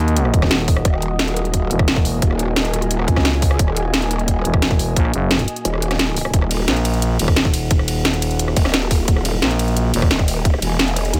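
A deep, moody pad of detuned sawtooth chords in Eb phrygian opens this mechanical, dark drum and bass excerpt at 175 BPM. It sits in the background with a slow attack, a warbling tone, chorus, built-in reverb and a sidechain pump, while a thick, growling FM bass pushes up front on a held Ebm. The FM bass falls away at 2.2 s and returns at 4.5 s. From 0.9 s a second growl bass takes hold, aggressive and wobbling through a formant filter, saturated by tube drive and thickened with chorus. The overdriven electronic drums stay tight and forward: a tight, layered kick and a kit with a cracking snare, rim clicks, ride and bright hi-hats. The kick drops out briefly at 5.7 s before the drop repeats, all in a dry mix.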